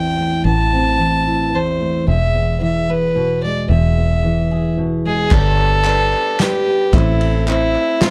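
The recording sounds dry and intimate, with little reverb, in this short cut from a longer indie folk piece in three that builds as it goes. A single fiddle carries the yearning, bittersweet melody up front, its reedy, gut-string tone touched by an airy bow. Beneath it sit a woody, full-bodied fingerpicked steel-string acoustic guitar on old strings and a round, dark, foam-muted fingered electric bass. The harmony moves from A minor to E, then to G at 5.3 seconds, where the arrangement fills out: a boxy picked archtop acoustic guitar joins, along with a distant, roomy drum kit played with bundle sticks, its dark cymbals, punchy kick and medium-tuned snare tucked in the background. Crisp, band-limited group handclaps with a vintage character also sit low behind the band. The fingerpicked guitar stops at 6.9 seconds as the chords return to A minor, and the bass drops out shortly before the end, leaving the fiddle, archtop, drums and claps to carry the final moments.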